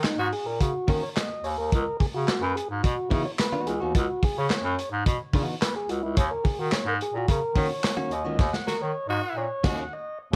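A crunchy breakbeat drum kit drives this cool, funky groove at 108 BPM in a straight 4/4, its punchy kick, medium-tuned snare, handclaps, hi-hat and crash sitting up front with a gritty, saturated tone and dark, rolled-off cymbals. Underneath, a bright, vintage bass clarinet carries the bass line in a classical manner, while a clean, picked electric guitar, recorded direct and compressed, joins as accompaniment at 0.9 seconds. A tonewheel organ takes the solo throughout this short cut from a longer piece, its clear tone marked by key click, a stopped rotary speaker and plate reverb. A growling, raspy tenor saxophone with light vibrato adds a brief second line, touching a single F#4 near the start and returning at 8.7 seconds. The harmony moves from D#m7 to C#m11 and back to D#m7, with band accents at the opening and again from 8.4 seconds, alongside a drum fill from 8.4 seconds to the end, all set in a light reverb.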